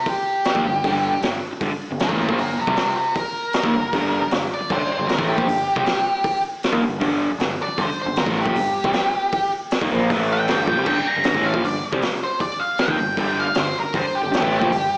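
A small-room live sound comes through a venue PA with club reverb and a boxy, small-speaker character, as if caught at a sweaty gig. This swaggering, menacing garage rock excerpt drives at 156 BPM in straight 4/4, sitting in G minor, and is cut from a longer piece. An octave-fuzz lead guitar takes a solo across the whole 15 seconds, its dark, distorted tone ranging from F4 up to Bb5 with a slapback echo trailing each note. Beneath it, a crunchy, double-tracked overdriven guitar pounds out a riff between G2 and Bb3, also touched with slapback, while a growling picked bass, bright and overdriven, holds down the low end from G1 to Eb2. A vintage drum kit sits up front with a punchy kick, high-tuned snare, hi-hat and dark, rolled-off crash cymbals. The harmony stays mostly on G minor, briefly jolting to an A5 at 10.1 seconds before returning to G minor at 10.5 seconds.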